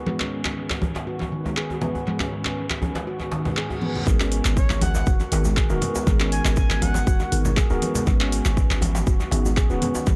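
A straight 4/4 afro house groove at 120 BPM in G# minor opens with congas, djembe and a deep house drum kit with handclaps and metallic hats, the thin-skinned, low-tuned congas sitting in the background and the djembe adding metal rattles under soft hands. Above them an ethereal, airy pad, sounding from the very first moment, holds very quiet sustained chords, while a worn, slightly out-of-tune tine electric piano, also present from the start, stabs in the background with dub echo. A ringing nitrided-steel handpan plays meditative arpeggios through a low-pass filter, analog delay and sidechain pumping. A reverse cymbal at 3.4 s leads into the drop at 4.1 s, where a punchy, up-front electronic kick, a boomy sine 808-style bass with sidechain pumping and a grainy tube shaker join. At 4.6 s a smooth, expressive sawtooth lead with vibrato, chorus and analog delay carries a short, high melody. 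The harmony moves from Badd9/G# to G#m9 and then to Badd9, and the echo-heavy mix with light reverb gives this earthy, warm fragment of a longer piece its spacious character.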